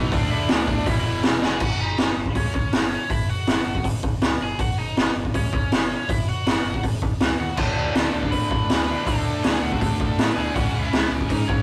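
Punk rock cut from a longer piece, rebellious and energetic, with a bright, biting overdriven lead guitar carrying the melody over a growling, punchy overdriven bass and an up-front, raw garage drum kit with a high-tuned snare and gritty, rolled-off top. Three picked rhythm guitars (a biting overdriven one in the background, a quiet cranked stack, and a scooped, double-tracked high-gain one) play the riff at the start, drop out at 1.6 seconds after a drum fill, and return at 7.6 seconds. The sound is a rough rehearsal-room recording, dry and saturated.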